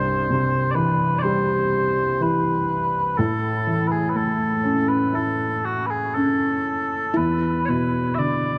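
A short excerpt of a Celtic slow air opens with sweet, mellow small bagpipes carrying the melody up front, sustained and continuous with a gentle vibrato, set against an upright piano whose accompaniment sounds warm, woody and slightly detuned. The mood is pastoral and tender, moving freely in rubato around 61 BPM in 4/4, tuned a touch sharp to A4 = 441 Hz. The pipes sit inside a diffuse ambient delay while the piano is thickened by a lush chorus, and the harmony rests on C before moving to A at 3.2 seconds. At 7.1 seconds a steel pan enters softly in the background with a metallic, shimmering second line on a single E4, as the chords settle on E7(no3). A long plate reverb of 3.7 seconds soaks the whole mix, giving it a dreamy atmosphere.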